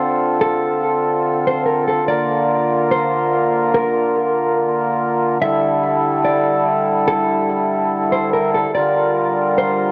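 Spacious and ethereal, this hip hop excerpt in D minor moves at 144 BPM with a half-time feel, as an up-front, reedy accordion with slow beating holds sustained chords through Dm7, Bb, A7sus4 and Gm7. From 0.4 seconds a clean, compressed electric guitar carries a dark melody, drifting through spring reverb and analog delay. The small-room ambience and light reverb sit over a dry, gritty sound.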